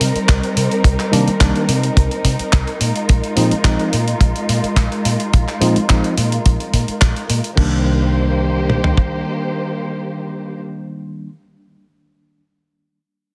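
A straight four-four nu-disco groove, sleek and groovy, rides on a damped, up-front 70s kit with a tight kick and toms, a gritty, compressed sampler-style kit of crash, handclaps and hi-hat, and a round, foam-muted fingered electric bass, while a dark, lush bowed string section with sidechain pumping, 12-bit grit and a low-pass filter swept until 7.6 seconds holds sustained chords over Cm7 and Bb7sus4, and a bright, clean tine electric piano with tape echo enters at 1.1 seconds and lingers until 11.3 seconds in this small-room excerpt from a longer piece.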